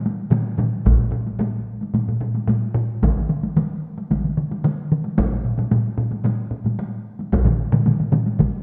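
A wet, reverberant scoring-stage sound surrounds this short cut from a longer piece of Japanese traditional taiko drumming, ceremonial and driving at 111 BPM in a straight 4/4. Four taiko ensemble parts sit up front: the first, struck with hard sticks in a live room, enters at 0.1 seconds; two heavy-stick groups follow at 0.3 seconds, one compressed and saturated, the other miked close. A fourth heavy-stick taiko ensemble, also heard in a live room, joins at 0.9 seconds and plays through to the end.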